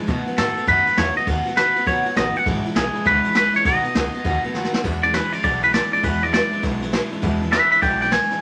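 A picked steel-string acoustic guitar opens this upbeat, rowdy rockabilly excerpt, its full-bodied dreadnought tone laying down the accompaniment at a brisk 202 BPM with a swung eighth-note feel in E mixolydian. Within a moment a pizzicato upright bass joins with a woody, thumpy gut-string sound, alongside a jazz kit played with brushes that carries a boomy kick, a medium-tuned snare, and ride and crash cymbals in a small, natural-sounding room. By 0.4 seconds a twangy electric guitar takes the melody, bright, clean and compressed, and sits up front as the loudest part. The harmony moves between B7 and E7, and a drum fill at 4.5 seconds leads into a clean electric guitar solo that runs from 4.8 seconds to the end. A wet studio reverb gives the lively performance a touch of space, and the clip is cut from a longer piece.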